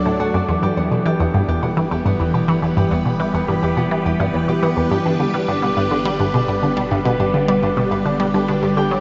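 Drenched in a huge, wet ambient reverb with a 7.5-second tail, the recording has a softened top end that stops short of 7.7 kHz. This is expansive, cosmic space music driven by a sequencer at 105 BPM in a straight 4/4, moving from E minor to G major at 5.1 seconds in a brief cut from a longer piece. Up front, a juicy, squelchy blip pluck carries the riff, its resonant filter giving a fast attack and short decay, colored by ring modulation, a noise layer, phaser and tape echo. A fingerpicked concert harp rings out acoustic arpeggios through tape echo, while a vintage string machine holds swirling, evolving sawtooth chords thickened by ensemble chorus and phaser. Beneath them a round sine sub bass sits deep in the background, and from 6.5 seconds a bubbling, detuned stepped-filter texture with a slow attack enters, barely audible.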